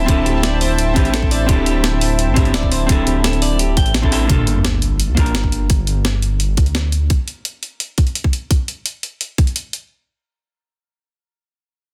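Lush and dreamy, this excerpt of liquid drum and bass at 171 BPM in G dorian opens on a D7sus4 drop where a dark hollow-body jazz guitar with sampler grit and dub echo, a smooth chorused analog pad pumping under the beat, a delayed clean guitar arpeggiating in the background, a deep, rumbling detuned saw bass and a tight, up-front electronic kick with gritty compressed breakbeat hi-hat and snare drive forward, before a very quiet sub drop and a filter sweep on the jazz guitar mark the impact at 4.3 seconds as the harmony moves to Gm7 and the drums carry on in a dense, heavily limited mix.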